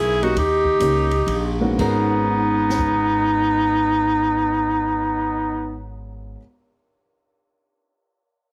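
This is a short excerpt of small-group swing and bop jazz in G# minor, set in a swinging 3/4 with a cool mood and a tempo that moves between 110 and 148 BPM, slowing down over the opening 1.8 seconds. A bright, forceful clarinet carries the melody with vibrato, sitting up front yet with a roomy, distant edge, while a vintage-toned trumpet with its own vibrato adds a second line beneath it. Underneath, a woody, growly upright bass plucks the low end and a smooth, warm grand piano supplies accompaniment from 0.2 seconds. An open jazz drum kit with dark cymbals, a high-tuned snare and a boomy kick plays from 0.2 seconds and drops out at 2.9 seconds. The harmony moves from D#7 to G#m11 at 1.8 seconds, and the whole passage carries light reverb and a heavily compressed, radio-like sound.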